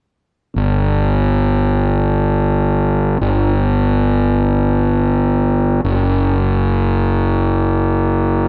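Soaring and euphoric, this brief rock fragment from a longer piece features a lone fuzz-drenched fingered electric bass, overdriven, round and punchy, sitting up front in a dry, close sound as it ranges low between F#1 and G1 from 0.6 to 8.4 seconds.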